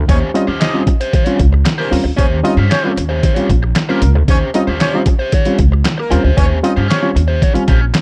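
Funk at 115 BPM in a straight 4/4, this short, playful and gritty passage cut from a longer piece sits in Eb mixolydian over a single Eb13 chord. A lo-fi sampler-style kit sits up front, its pitched-down, muffled kick, hi-hat, handclaps and medium-tuned snare pushed through overdrive and compression, with a thumpy low end. Beside it, a woody, gut-strung upright bass plays pizzicato from 0.0 seconds, equally prominent. A reedy electric piano with fast tremolo adds clean stabs, while an overdriven electric guitar with wah fills in picked accompaniment. Quieter underneath, a horn section with light vibrato and a smooth top carries a second line until 7.1 seconds, and the production has a dark, warm character with digital ambience.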